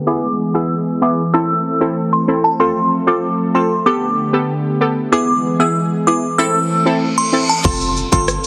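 Sultry and tough, this 95 BPM dancehall excerpt in A minor lays a smooth, detuned sawtooth pad with sidechain pumping under a filter sweep, while a crystalline FM synth bell carries the melody through chorus and digital delay and punchy, brassy synth stabs sit up front over E, Am, F and Gadd9. A reverse cymbal rises from 6.7 s into an electronic impact. At 7.6 s a deep, boomy 808-style bass and a tight, tape-warm island pop drum kit arrive, the kit's crash, kick, rim click and shaker carrying 12-bit sampler grit, all within a dense, heavily limited master with light reverb.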